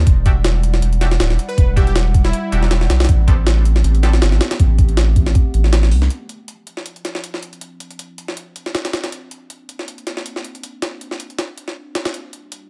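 Driven by a gritty, compressed jungle sampler-style kit with a thumpy kick and high-tuned snare at 159 BPM with a light 16th-note swing, this nostalgic, atmospheric drum and bass excerpt opens on a drop where a deep, saturated sub bass sits up front until 6.1 seconds, a nasal band-passed chord stab with chorus and dub echo sounds until 4.1 seconds, a catchy, punchy unison lead with vibrato and lush chorus flashes briefly from 1.5 seconds, and a warbling, lo-fi tape-like pad hovers darkly in the background through minor ninth chords moving from Em9 to Am9, Dm9 and Cm9 within a digital ambience.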